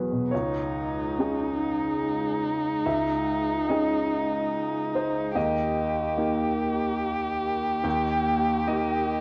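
A clear baby grand piano opens this hopeful, tender neoclassical fragment, its worn, cassette-tinged tone ringing with long sustain up front in a rubato three-beat feel. Within a moment a single muted violin enters, bowed con sordino with a veiled, dark voice and vibrato, singing a close, narrow melody under a touch of tape echo. Behind them a warm analog pad holds soft-attack chords, its smooth, detuned sawtooth and triangle layers shaped by wave-folding, a moving notch and chorus, sitting quietly in the background. The harmony rests on a Dbmadd9 chord before shifting to Eb at 5.4 seconds. A wet spring reverb and the character of a home cassette recording wrap the trio in an intimate haze, and the passage is cut from a longer piece.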